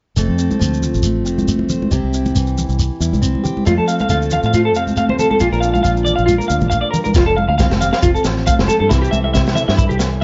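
Heard in a small room with light reverb and a dulled top end, this sunny highlife guitar band excerpt in F major moves at 137 BPM with a gentle swing, as a concert-toned picked steel-string acoustic guitar, a round, foam-muted fingered electric bass, a grainy shekere and thick-skinned congas set in the background form the groove, a bright, twangy electric guitar through a small old amp arrives up front with delayed arpeggios at 3.7 seconds, and a gritty, saturated breakbeat drum kit with a punchy kick and a high-tuned snare joins at 7.2 seconds.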